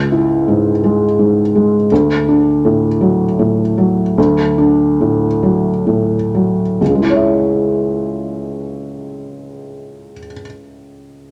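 A felt-muted upright piano, mellow and intimate with its action noise audible up front, plays a longing, fragile classical passage in a rubato 6/8 at about 41-56 BPM counted in dotted quarters, slowing from 0.8 to 6.8 seconds as its accompaniment moves from C#m to D and settles back on C#m at 6.8 seconds, all bathed in a wet large-studio reverb in this fragment cut from a longer piece.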